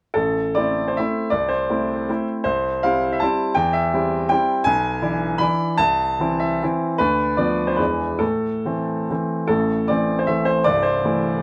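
Close, detailed microphones and a light reverb put a brilliant grand piano up front, its long sustain letting each chord ring into the room. This short passage, cut from a longer piece, is a romantic classical dance in 3/4 and A minor, tuned to A4 = 443 Hz, with a nostalgic yet capricious mood. The solo piano plays dotted rhythms across a span from C1 to B5, and its rubato lets the tempo drift between 129 and 178 BPM. The harmony moves from A minor through C major and E7 before settling on A minor again around 8.2 seconds. The opening phrase starts over at 9.5 seconds, and the piano rings until 11.4 seconds.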